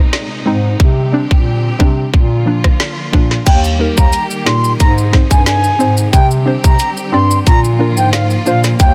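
A straight dancehall groove in 4/4 drives this bouncy, tough passage, built on an electronic, produced island pop drum kit with a tight kick, woody snare, rim clicks, hi-hat and crash, all sitting up front. Beneath it, a dark bass clarinet carries the low line with jazz-style vibrato, also up front, while a rich, lush studio string section holds sustained bowed chords with portamento, set low in the mix and pumping from sidechain. A hollow square-wave pluck enters at 0.5 seconds with detuned, chorused accompaniment, its noise layer and filter sweep giving the fast-attack, decaying notes a mellow character. At 3.5 seconds the second section opens as a bright, reedy baroque flute takes the melody in its high register, distant and soft-attacked with delay, joined by close, dry acoustic maracas played with soft hands. The harmony circles through Ab, Csus2, Bb and Eb over a small room ambience, finished with a dense, heavily limited modern master.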